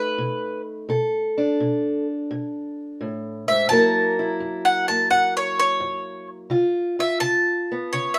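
A bright bowl-back mandolin carries the melody up front, its picked double strings ringing out across this short fragment of acoustic country blues. Beneath it, a fingerpicked steel-string parlour guitar supplies the accompaniment, its tone dark and boxy and also placed close to the listener. The mood is gritty and rollicking, moving at 85 BPM in 4/4 with a loose swing on the eighth notes. The harmony shifts through dominant and minor seventh chords, starting on B7 and Bm7 before moving to F#7 at 3.7 seconds and C#7 at 6.5 seconds. Both instruments play throughout the 8.2 seconds, set in a moderate studio reverb that lends the duo a natural sense of space.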